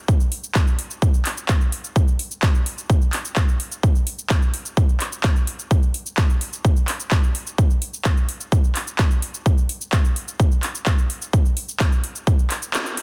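A punchy, layered electronic kick drum sits up front, tape-warm and re-recorded in a large room, driving this triumphant, anthemic EDM excerpt in a straight 4/4 until it drops out at 12.7 seconds on a band accent. Behind it, a layered big-room dance drum kit of handclaps, shaker and metallic hi-hats runs from the start through 13.0 seconds. The mix carries a digital ambience and a dense, heavily limited modern master.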